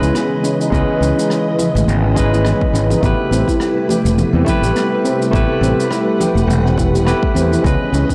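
This sunset chillout excerpt moves at 104 BPM in 4/4, with a gentle 16th-note swing and a smooth, wistful mood as the harmony drifts from C#m9 to Am9 and back to C#m9 at 7.6 seconds. A shaker and rim click played with brushes set the pulse from the start, an overdriven, deep electronic kick joins at 0.7 seconds, and high-tuned, thin-skinned congas played with hard hands sit in the background from 1.6 seconds. Up front, a growling fingered electric bass with overdrive and tube saturation sounds punchy and bright, sitting beside a barky, clean tine electric piano heard through a combo amp with analog delay. Behind them, a silky string machine holds slow-blooming sustained chords with ensemble chorus, while a shimmering steel pan, played with soft rubber sticks, runs arpeggios through 12-bit sampler grit, delay and a filter sweep. The whole passage has light reverb and small room ambience, with a dry, gritty cassette-tape character.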